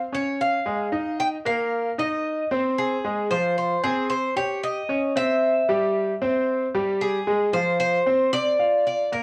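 A metallic, double-stringed Cuban tres carries the melody up front from 0.1 seconds, its picked lines ringing with some octave-doubled strings and a cassette tape coloring. Alongside it, a brilliant, polished grand piano plays arpeggios from the very start, equally present and also touched by cassette tape character. This short, sultry Latin fragment in straight 4/4 has a nostalgic, home-recorded feel, set in a moderate studio reverb and ending at 9.2 seconds.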